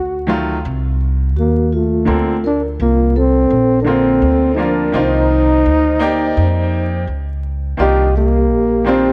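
A dark, forceful trombone leads this smoky, cool hip hop cut, playing a close-miked jazz-style solo with light vibrato between A3 and G4 over a swung 84 BPM groove in 4/4, set in C dorian. Beneath it, a woody, thumpy pizzicato upright bass sits up front from the start, holding the low end from Bb1 to F2. A brilliant, vintage-toned upright piano joins at 0.3 seconds with accompaniment, and a mellow vibraphone played with soft mallets adds a ringing second line from 1.4 seconds, its fast motor vibrato shimmering. The harmony moves from F7b9 to Bbmaj9 and settles on Cm11, with a brief new section arriving at 7.8 seconds before this cut from a longer piece ends. Light studio reverb surrounds the band, while worn, warbling cassette tape, vinyl crackle and pitch drift give the whole a hazy, aged character.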